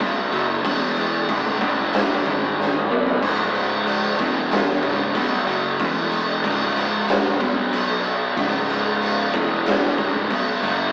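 An oversized, low-tuned acoustic drum kit with a punchy kick and a saturated, gritty tone sits up front, breaking into a fill at 2.6 seconds, alongside a dark, double-tracked fuzz guitar riff and a growly, overdriven fingered electric bass further back, in this sludgy, brooding stoner and doom metal excerpt at 93 BPM in C# minor, captured as a rough rehearsal-room recording with light reverb and an AM radio sound.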